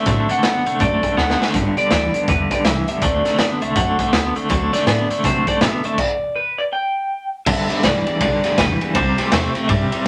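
A swung 162 BPM groove in G major drives this rowdy, retro rockabilly excerpt, where a slightly broken-up, lo-fi lead guitar through a small old amp carries the twangy melody over a compressed, tremolo-washed clean electric riff, a full-bodied picked dreadnought acoustic in the background, a woody, thumpy pizzicato upright bass on gut strings, and a gritty garage kit with a boomy kick and pumping room sound that drops a fill at 1.2 seconds, all under light reverb, before a stop from 6.0 to 7.5 seconds gives way to a new section moving from G to C.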